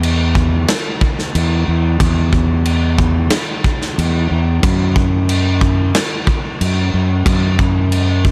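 A rock cut leaning toward shoegaze and dream pop, this brief section out of a longer piece carries a wistful, hazy mood over a straight 4/4 pulse. A fingered electric bass sits up front with a fuzzy, overdriven growl, its punchy attack staying low between E2 and F#2. Beside it, a big acoustic rock kit plays crash cymbal, kick and snare, with a punchy kick, a medium-tuned snare and a warm, rolled-off top. The drums have a mid-forward character and the open feel of a big room, yet they also sit close and present. Both parts run together from the start to 8.3 seconds, and the overall sound is dry, carrying little reverb.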